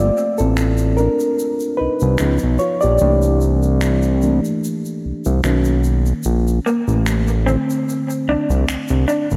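A gently swung 74 BPM neo-soul R&B groove in 4/4 sets an introspective, soulful mood, as a reedy, up-front electric piano with lush chorus carries a solo over rootless Gm9 into C#9, C13, Bmaj9 and Bbmaj9 chords, a fat, saturated, detuned analog bass holds the low end, a quiet egg shaker and finger snaps with a group-handclap, live-room feel tick beneath, and from 6.7 s a slightly broken-up, lo-fi electric guitar through a small old amp adds a picked second line with analog delay, all set in a dreamy hall-reverb mix cut from a longer piece.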